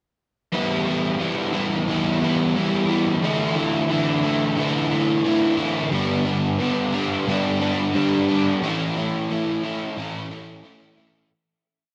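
Hazy, dreamy rock at 89 BPM in a straight 4/4, carried entirely by an up-front overdriven semi-hollow electric guitar that strums double-tracked chords with whammy-bar dips, its hollow-body tone thickened by lush chorus and tape echo. The short verse moves through Em, Dsus2, G and A from 0.5 seconds. A wet concert hall reverb with digital ambience surrounds the guitar until the piece fades out from 8.6 seconds.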